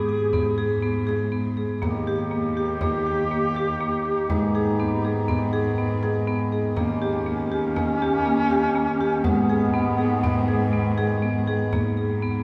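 Drenched in a long cathedral reverb, this hypnotic, pensive fragment of contemporary chamber music moves at 121 BPM in 5/4 in G# harmonic minor, with up-front marimba arpeggios struck with medium hard mallets over a warm, sul tasto cello bass with light vibrato, a breathy, subtone clarinet with scooped notes drifting from a distance as the second line, a deep frame drum in the background from 0.3 seconds, and a reedy, nasal hand-pumped harmonium holding chords from 1.8 seconds as the harmony sways between G#m and D# before settling on G#madd9 at 11.7 seconds.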